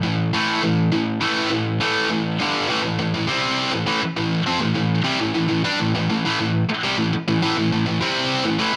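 A straight 4/4 pulse at 102 BPM drives this short rock excerpt in A minor, cut from a longer piece. A lone high-gain distorted guitar carries everything from 0.0 to 8.8 seconds, picked and double-tracked, bright and up front, moving between G2 and D4. It opens on an A5 power chord, shifts to G5 at 2.4 seconds, and settles onto A minor at 2.7 seconds as the passage moves into its second part. The mood is driving and aggressive, with the guitar's crunch filling a large studio room whose moderate reverb lends the sound depth.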